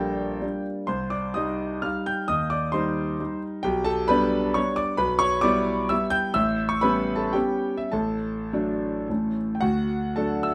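This is a romantic classical piece, a nostalgic and wistful triple-time dance with dotted rhythms and a flexible rubato feel, heard in a short cut from a longer work. A solo concert grand piano plays throughout, intimate and up front, with deep bass, long sustain and audible action noise, its harmony moving from minor chords into D major at 3.6 s. A moderate reverb from a large studio gives the piano a natural sense of space.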